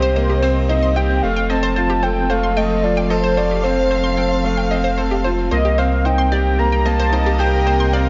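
A moderate echo-chamber reverb with a 1.8-second tail surrounds this melancholic, moving piano-and-strings electronica excerpt, its top end rolled off for a dusky, intimate sound. A velvety, detuned synth lead carries the melody with chorus and vibrato, singing high above the mix alongside a bright, woody upright piano playing a riff with long sustain and digital delay, the piano placed up front. Beneath them, a deep, round sine sub bass holds the low end with a mellow, sustained tone. A dark, distant chamber string section bowed with expressive vibrato lays down sustained chords, while a detuned sawtooth pluck with ring modulation and a noise layer spins arpeggios through chorus and digital delay. The harmony moves from Cm7 to F at 1.2 seconds and back to Cm7 at 5.5 seconds, with all five parts playing together throughout the roughly eight seconds.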